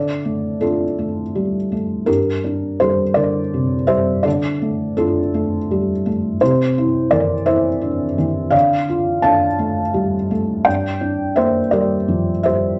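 Reflective and intimate, this short neoclassical minimalist piano excerpt drifts along at 56 BPM in 6/8, its rubato pacing lending each phrase a hesitant, breathing quality. A felt-muted upright piano plays alone for the full 12.8 seconds, ranging from G2 to A5 in G dorian, tuned slightly low to A4 = 438 Hz. Its tone is soft and dark, dulled by thick felt, with short sustain and the mechanical action noise clearly audible, which makes the instrument feel close and up front. A slapback echo trails the piano, while a moderate studio ambience adds a modest sense of room, and the top end is rolled off above 7.8 kHz for a hushed, mellow finish. The harmony circles gently through Dm, Gm, Dm, C, Dm and back to Gm, and this passage is cut from a longer piece.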